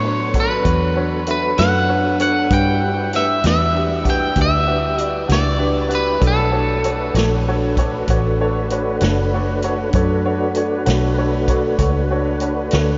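Drenched in a huge, dreamy reverb with softened highs, this mournful, brooding slow blues in 12/8 at 65 BPM in B minor moves from Bm7 to Em7 and back: a twangy, slightly broken-up electric guitar with spring reverb carries the melody up front until 7.1 s, over a woody, slightly detuned upright piano with analog chorus, clean tonewheel organ chords turning through a slow rotary speaker, a round, foam-muted fingered bass, and a vintage kit with a punchy kick entering at 0.3 s, before the piano slips in a fill at 12.7 s.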